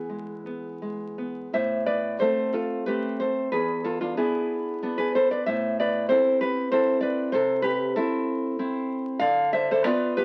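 A 3/4 pulse stretched by rubato, drifting between 82 and 98 BPM, carries this short cut from a longer romantic piece for solo classical guitar in A minor, tuned a touch sharp to A4 = 443 Hz. The nylon-string guitar, dark and fingerpicked, sits up front across its range from E2 to F5, moving through E, A minor, E7 and A minor over C before settling on B diminished over D at 9.2 seconds, in a passionate yet wistful mood. A moderate studio reverb surrounds the playing, and the sound has the character of a very old 78 rpm record, complete with vinyl crackle.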